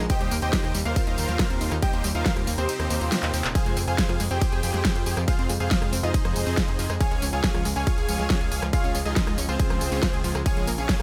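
A silky analog string pad, a round, warbling analog pluck arpeggio with tape echo and a gritty, saturated synth bass open this soaring, euphoric uplifting trance excerpt in F minor at 139 BPM, all pumping to the sidechain except the pad. Huge, lush detuned supersaw chords carry the melody over a clear concert grand piano second line, while a punchy, overdriven kick and a big-room kit with a huge snare, metallic hats, claps and tambourine drive the groove. The kick drops out from 2.7 to 3.6 seconds for a drum fill and a very quiet electronic swell, and the chords move through Fm, Db and Bbm7 in a fairly dry mix.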